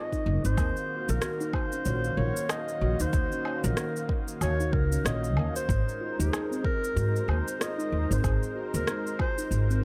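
Mystical and meditative, this organic downtempo piece moves at 94 BPM in 4/4 with a gentle swing on the sixteenths, set in Eb dorian. A dark clarinet carries the melody with light vibrato, subtone breath and scooped notes in a jazz style, its smooth top trailed by dub echo and shimmer reverb. Beneath it, a steel tongue drum struck with firm rubber mallets rings out round, pure arpeggios, also bathed in dub echo and shimmer, while a mellow analog pad of detuned sawtooth and triangle tones with a sub octave holds slow-attack chords through chorus and sidechain pumping. A woody, bright pizzicato upright bass with sidechain pumping sits up front from 0.3 seconds alongside an overdriven, layered electronic kick with a deep punch. Overdriven electronic shaker, woodblock and rim click, re-recorded in a small room, round out the groove as the harmony moves from Ab13 to Ebm7 and then Ab69 at 5.7 seconds in this echo-heavy mix cut from a longer piece.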